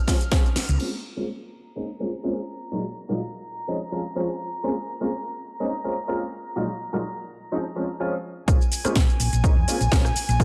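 Nostalgic and groovy, this filtered disco house excerpt in Bb minor at 125 BPM, with a light 16th-note swing, sets a dark, mellow concert grand piano under nasal, gut-toned chamber strings, both pumping through a low-pass filter. A punchy overdriven kick sounds briefly at the start, and then a house kit with cracking snare and metallic hats and a round hollow-body bass hit a band accent at 0.6 seconds. The rhythm section falls away during a long filter sweep and returns for the drop at 8.5 seconds over Dbmaj7 and Bbm9 chords.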